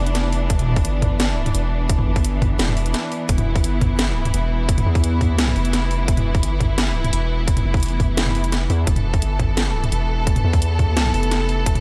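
The sound is dry and close overall, with the drums carrying their own studio reverb and overdrive. This cinematic, spacious half-time drum and bass excerpt sits at 172 BPM in 4/4, in E phrygian, resting on an E5 chord. From the start, a rich studio string section holds smooth, bowed sustained chords with vibrato, pumping under sidechain compression. Beneath them, a long 808-style bass sits up front with a deep, mellow sine tone, fast attack and long decay. The overdriven drum kit brings a cracking snare, bright hi-hats and toms, and a tight, layered electronic kick joins at 0.5 s. A brief break at 2.9 s interrupts the groove before it carries on.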